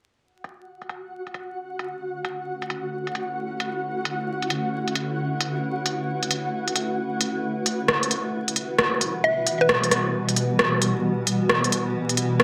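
A swung sixteenth-note pulse at 133 BPM opens this nocturnal, ghostly future garage excerpt in B minor, where an up-front organic electronic drum kit of crisp, low-pass-filtered hi-hat and rim click sits in a large room, a flickering, detuned grainy texture enters at 0.7 s, a blurred, evolving granular cloud pad with 12-bit sampler grit fades in from 2.2 s on sustained Bm11 and Emadd9/B chords, and a woody, round mallet-like synth pluck coated in chorus, phaser, cassette tape and tape echo briefly appears at 9.2 s, all beneath a lush hall reverb and vinyl crackle.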